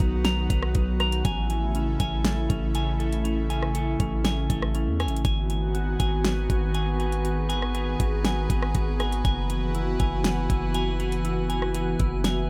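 Floating and dreamy, this half-time atmospheric cloud-rap excerpt at 120 BPM sets an airy, breathy pad with chorus and a clean electric guitar's analog-delayed arpeggios over Bmaj7, Amaj7, G#m7 and F#9sus4, anchored by a deep, sine-like 808-style bass and an up-front, smooth R&B drum kit with a knocking kick, fat snare, rim click and metallic hats, while a glassy texture of drifting overtones enters at 5.6 seconds in a dry, echo-heavy mix.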